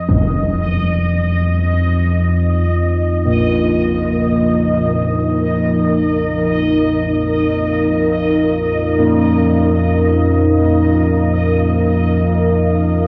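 Desolate and ominous, this dark ambient drone drifts in free time, cut from a longer piece and tuned to A4 = 438 Hz around a single Ebsus2 chord. From the first moment a deep, rumbling drone of folded triangle and sawtooth waves anchors the low end, while a bubbling, resonant texture of detuned sawtooth with random filter steps sits quietly high above it, softened by chorus. At 2.2 seconds a moody pad enters with sustained chords, built from detuned unison sawtooth with a sine sub octave, ring modulation and chorus, its slow attack and long release blurring it into the drone. Mellow carillon bells follow at 3.3 seconds, their soft bronze ringing traced in arpeggios and scattered through a diffuse ambient delay. A huge reverb with an 8.0-second tail drenches the sound, and a worn cassette quality adds warbly pitch drift that deepens the sense of decay.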